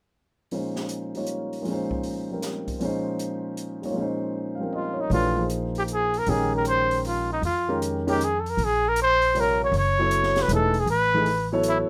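This cool, intense modal jazz in a swinging three opens at 0.5 s with a concert grand piano comping up front, its deep bass and audible action noise giving an intimate, natural sound, alongside an open acoustic drum kit whose small-room hi-hat, high-tuned snare and boomy kick sit low in the mix. At 4.8 s a breathy trumpet takes the solo melody, mellow and whispered, with a soft attack, scooped notes and light vibrato placed close to the listener. The upright bass joins at 5.1 s as a new section begins, its pizzicato steel strings sounding woody and thumpy. The harmony rests on a minor eleventh chord before moving to another near the close. A light reverb adds a little space, and the passage is cut from a longer piece.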